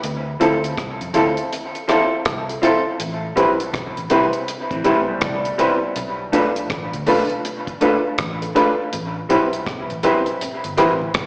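Lovers rock reggae at 81 BPM in A minor, bittersweet and longing with a swung sixteenth feel, built on a round, foam-muted fingered bass and a dark, tight-kicked drum kit of hi-hat, kick and rim click under slapback echo, while a clear, intimate grand piano with audible action noise plays accompaniment and a slightly broken-up, lo-fi guitar sits up front with tremolo stabs through dub echo and plate reverb, a twangy second guitar adds phased arpeggios from 4.7 to 5.9 seconds, and low-tuned, thick-skinned congas enter in the background at 8.9 seconds, all over Dm9, Am9 and Bm7b5 chords heard as a live gig through the venue's PA with small-speaker sound.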